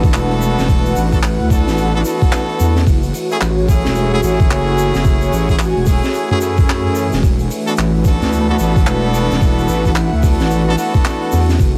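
A swaggering, playful glitch hop groove at 110 BPM in 4/4, swung on the sixteenths, is driven by a gritty, thumpy, pitched-down electronic kick up front, with a swinging big-band kit adding handclaps, hi-hat and a medium-tuned snare while a grainy tube shaker sits in the background. A heavy, saturated wobble bass with chorus carries the low end beneath tight, brilliant jazz horn stabs with light vibrato and delay, as a warbly, nostalgic lo-fi pad with phaser, 12-bit sampler grit and sidechain pumping holds sustained chords from E9sus4 to F#m9 at 2.9 seconds and back at 7.2 seconds, and an airy, breathy pad adds a soft texture above. Vinyl crackle runs throughout this short cut from a longer piece.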